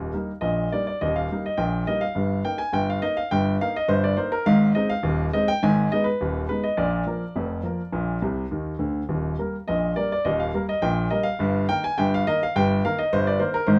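This is a lively, jaunty ragtime piano piece in Eb major, moving at 104 BPM in a straight 2/4 metre. A single grand piano carries the whole performance from 0.0 to 13.8 seconds, its warm, smooth and vintage tone set up front in the mix and spanning from Eb1 up to Ab5. The harmony moves from Eb through Eb/G to Ab, shifts briefly to Abm, and reaches Bb before settling back on Eb at 9.1 seconds and Eb/G again. A short piano fill between 8.2 and 9.1 seconds leads into that return. Moderate reverb from a small room surrounds the instrument, and the passage is cut from a longer piece.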